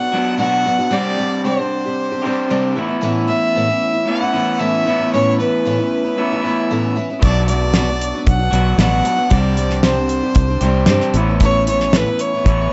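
A clear, focused fiddle with light vibrato carries the melody through tape echo from the start, over a shimmering, octave-doubled twelve-string acoustic guitar and a twangy, slightly broken-up electric guitar riff, cycling through Bm, Csus2 and Aadd9 in this hopeful, nostalgic folk rock and heartland rock passage at 114 BPM in 4/4. At 7.2 seconds a punchy, foam-muted fingered bass and a dry, damped 70s drum kit with a fat snare and tight kick arrive up front. The production is dark and warm with light reverb, and the passage is cut from a longer piece.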